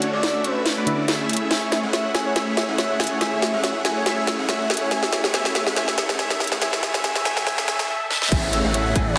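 Huge, bright supersaw chords sit up front through a filter sweep that runs across this bright, lush future bass build-up, pumping against a soft round pluck that opens the passage with dark, chorused, tape-tinged tones before a gentler pluck takes over with background arpeggios from 1.5 seconds. A velvety synth lead carries the melody with vibrato and dub echo, while a trap kit with a sharp snare, metallic hats and crash drives a drum fill in half-time swing and a riser and downlifter hover in the background. At 8.3 seconds a hard-clipped electronic kick and a thick, detuned saw bass arrive to cap the build, all bathed in a wet digital room reverb under a dense, heavily limited master.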